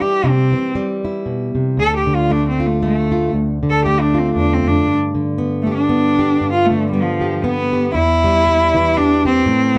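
A bowed cello and a fingerpicked, plugged-in steel-string acoustic guitar begin together in this short folk passage, cut from a longer piece, moving in a lilting triple metre with a gentle swing on the eighth notes. The cello, played by one player, takes a featured melody through the first 7.9 seconds. Its tone is nasal and boxy with light vibrato, smooth and even, set up front and bathed in plate reverb. Beneath it, the jumbo guitar gives full-bodied fingerpicked accompaniment, also close in the mix, moving through C, D minor and G before the harmony turns to E minor as a new section begins at 7.9 seconds. The mood is wistful and melancholic, and the dark, warm production places both instruments in a moderate studio room.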